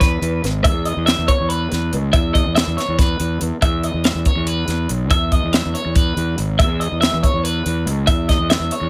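A dry, close-sounding excerpt of wistful, playful math rock with a midwest emo lean, moving in 7/8 at 282 BPM counted in eighths over a straight feel. A clean, twangy twelve-string electric guitar spins bright, compressed arpeggios up high, while a growly, fuzz-overdriven fingered bass holds the low end. Alongside them, a crisp, polished fusion drum kit with a high-tuned snare, punchy kick and hi-hat keeps time through chords circling C#m9, C#m7/E and E5.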